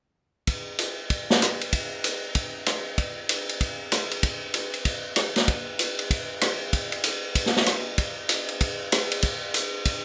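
The rhythm is a lively swing in four, with the eighth notes leaning into a loose, bouncing lilt that gives this short jazz fragment its playful, swinging mood. A big-band drum kit carries the whole piece from 0.5 seconds to 9.9 seconds, sounding acoustic and natural, and it sits up front in the mix. Hi-hat, ride cymbal, snare drum, kick drum and rim clicks make up the kit, with a punchy kick and a medium-tuned snare giving the groove its body. Around 5.5 seconds the music moves into a new section, as though the fragment were cut from a longer arrangement. A small room adds a moderate touch of reverb, and the rough home-demo mix keeps the sound unpolished.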